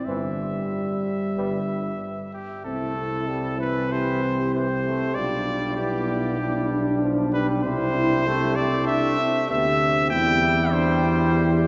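A bright trumpet opens the moment at 0.0 seconds with a lightly vibratoed melody, and a triumphant, noble classical brass quintet passage takes shape at a rubato 96 BPM in C major. The trumpet and a soft-attacked, smooth-topped tuba bass sit up front, while a dark flugelhorn second line and a mellow French horn stay in the background and a brilliant, vintage-toned trombone fills in the accompaniment. Voiced chords settle into a new section from 2.7 seconds, all washed in a long, wet cathedral reverb with a gently rounded top end, in this passage cut from a longer piece.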